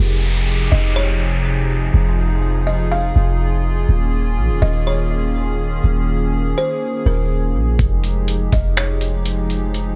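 A buzzing, woody kalimba carries a hazy, melancholic melody through tape echo and a low-pass filter over a hollow, flute-like pad with sidechain pumping and a deep, boomy 808-style bass, while an electronic downlifter runs through the first 3.9 seconds and a muffled, pitched-down sampler-style kit of finger snaps, hi-hat and thumpy kick arrives at 7.8 seconds in this half-time cloud-rap excerpt moving from Fm7 to Eb7sus4 and back.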